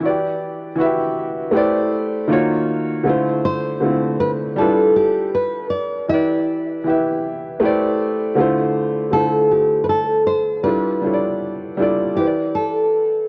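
Worn, warbling old tape with a pitch that drifts gives this reflective, nostalgic hip hop cut its hazy character, set in a moderate plate reverb. At 79 BPM with a light swing on the 16ths, a fingerpicked nylon-string guitar with fresh strings and a deep classical tone carries the melody up front, while a soft upright piano muted with thin felt plays the accompaniment with an intimate, short-sustained sound, both filtered to a mellow dullness. Moving through jazzy chords such as Am11, Dm9 and G13 in D dorian, tuned slightly flat of standard pitch, the piece shifts into a new section at 9.1 seconds.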